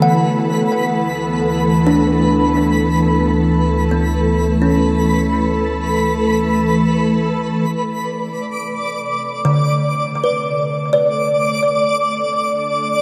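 Drenched in a wet cathedral reverb, this excerpt from a longer ambient piece sits in a vast, echoing space, drifting in free time with a serene, luminous mood and tuned to A4 = 438 Hz. Up front, a soft additive organ-like pad holds sustained chords, its pure, full-bodied sine tone detuned and thickened by ensemble chorus, moving from Dsus2 to Amadd11/C and settling on D5. A woody kalimba with a solid-board pluck plays short arpeggios through a delay. A bright, twinkling granular texture floats high above, sparkling with an octave-up shimmer. A deep, ominous rumbling drone supplies the bass from 1.3 s until 7.7 s, where the pad begins a fade-in that carries it through the closing stretch.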